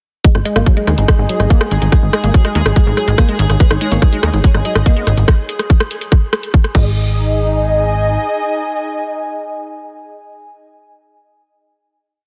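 Alien and driving, this short psychedelic trance piece runs at 143 BPM in 4/4, with a tight, overdriven electronic kick pounding four-on-the-floor up front beside an overdriven drum kit of bright closed hats, rim clicks and crash, while a punchy, galloping analog bass in sixteenths and a woody, warbling wave-folded pluck playing an accented acid line in the background drive the groove. Around them, a breathy pad with slowly shifting chords, a pulsing gated texture holding a high note with vintage 12-bit grit, and a barely audible nasal wobble bass in short answering phrases fill out the sound, all but the wobble and bass pumping to the kick. From 3.6 s a thick, detuned unison lead with phaser and delay repeats a riff over a pedal note in sixteenths, and from 7.0 s the piece settles on a final chord carried by the pad and lead, the lead fading at 10.0 s and the pad lingering until about 10.4 s.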